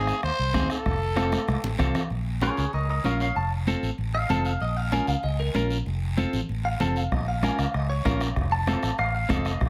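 Driving, passionate cumbia at 192 BPM in Bb minor, opening with a gritty, growling trumpet solo that ends at 1.8 s over a drum fill, while a twangy, scooped clean electric guitar plays accompaniment and a round, amped fingered bass sits up front. At 2.4 s a second bright, picked electric guitar takes the lead through spring reverb and slapback echo, soloing over chords that alternate between Bb minor and F before closing on F7. Raspy guiro plays alongside thick-skinned congas with hard hands that sit in the background, and a soft-beater bombo sounds distant in a large room, dropping out after the opening and returning at 7.1 s.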